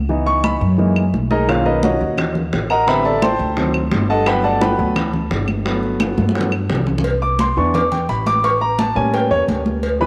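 A dark, growly pizzicato upright bass opens this lively, sophisticated Afro-Cuban jazz excerpt, joined almost at once by a concert grand piano and high-tuned congas. The piano sits up front with deep bass and a cassette-tape colour, and it solos across the whole passage over rich extended chords such as C#m9, Bmaj9 and D7b9. The congas sound bright and thin-skinned under hard hands, while woody claves sit in the background through the first part of the passage. Round, low-tuned bongos and cowbell arrive at 1.5 s, sounding distant in a large room and played with soft hands. A drum fill near 6.2 s leads into a repeat of the opening section, and a lush hall reverb surrounds this home cassette recording.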